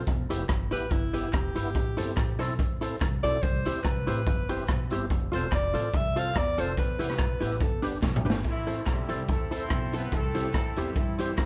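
A driving, lightly swung ska beat at 143 BPM in A minor comes from a gritty, saturated garage drum kit with a boomy kick and pumping small-room sound, under a thumpy, woody pizzicato upright bass and very quiet, crisp group handclaps. A dark, clean hollow-body jazz guitar sits in the background while a fat, lightly overdriven tonewheel organ adds percussive stabs with key click, chorus vibrato and a slow rotary speaker. A bright alto saxophone with light vibrato and a soft, subtoned attack carries an energetic solo until 7.8 seconds, and after a drum fill a distant, punchy horn section takes over the melody in octaves with tape echo from 8.5 seconds in this clip cut from a longer piece.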